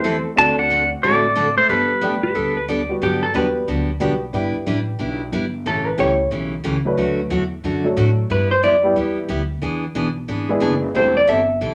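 Heard through a wet club reverb, this down-home, playful western swing passage opens with a twangy, up-front pedal steel guitar carrying the melody over a softer clean lap steel, both sliding with volume swells, and a dark, hollow-body jazz guitar that takes its solo at 3.0 s above a swung bed of bright, full-bodied picked acoustic guitar, a woody upright piano with short sustain, and a thumpy gut-string pizzicato upright bass.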